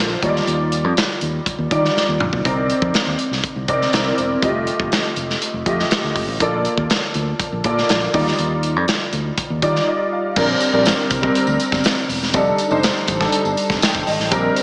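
A grand piano with audible action noise and long sustain, treated with analog chorus and slapback echo, opens this urban, nocturnal slice of polished 1980s jazz-funk pop at 121 BPM alongside a fingered electric bass. A punchy, up-front studio drum kit with bright cymbals arrives at 0.2 s and plays a fill around 2.0 s, while lush extended chords such as Ebmaj9, Cm9 and F13 move beneath. At 10.4 s a jingly, very quiet tambourine joins the groove, all set in a wet hall reverb that gives the mix a big arena feel.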